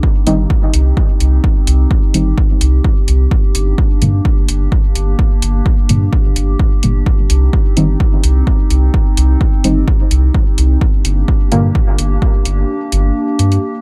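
Dub techno at 128 BPM in C minor, hypnotic and cavernous, where a punchy, tape-warm electronic kick sits up front with a small-room electronic hi-hat and a round, soft sub bass pumping to the sidechain, while a dark, vintage chord stab with phaser, chorus, dub echo and a filter sweep plays alongside a warbly, detuned lo-fi pad with slow attack and built-in reverb, moving between Cm and Gm until the kick drops out at 12.7 s in this dry-sounding cut from a longer piece.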